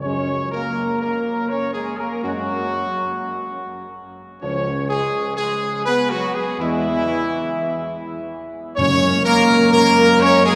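In a straight 3/4 at 83 BPM, this regal, triumphant classical fanfare in F# major, cut from a longer piece, sets a clear, up-front trumpet section on the melody over sustained chords from a bright, close-miked trombone section and a very quiet, mellow French horn section with light vibrato, while a warm, distant tuba holds the bass and timpani struck with hard mallets sound dry in the background from 8.8 to 9.8 seconds, all bathed in the long wash of a cathedral heard from further back in the room.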